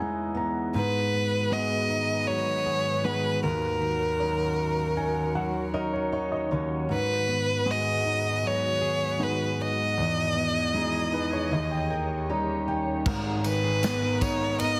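Heavily compressed with a radio-like sheen and moderate plate reverb, this longing pop ballad excerpt sets an intimate concert grand piano with audible action noise and fills against background fingerpicked steel-string guitar arpeggios with tape echo, a glassy, warbling FM pad entering at 1.4 seconds, and an expressive up-front violin melody with vibrato and portamento from 0.8 seconds, before a natural drum kit with a punchy kick arrives at 13.1 seconds and a distant, jingly tambourine follows at 13.4 seconds.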